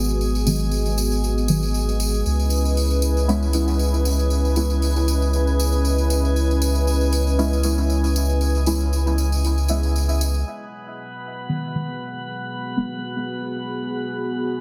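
A lightly swung 16th-note groove at 117 BPM in 4/4 carries this meditative, deep dub techno excerpt in G# minor, with a close, dry, jingly tambourine in the mix. Underneath, a round, mellow sub bass sits up front with a fast attack and sustained notes, while a moody, detuned analog pad with a slow attack holds dark chords moving from G#m7 to C#m7. Soft, wave-folded chord stabs decay through chorus, phaser and dub echo, their filter sweeping across the passage. Alongside, a calm, glassy texture of drifting sine overtones lingers with a long release in its own reverb. The bass and tambourine drop out around 10.4 seconds as the harmony returns to G#m7, leaving the pad, the texture and the stabs in a light digital ambience with a dense, heavily limited modern master.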